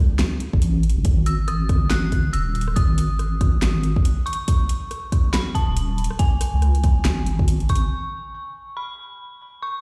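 A swung, half-time 4/4 groove drives this brooding, cavernous deep dubstep fragment, where an up-front, saturated wobble bass with chorus and a deep, tape-warm electronic kick anchor a layered drum kit of handclaps, metallic hi-hat, rim click and fat snare in small room ambience, while an eerie, inharmonic synth bell with chorus and dub echo enters at 1.3 s and rings on alone after 7.9 s, the mix sounding as if played on a big sound system in a bare room.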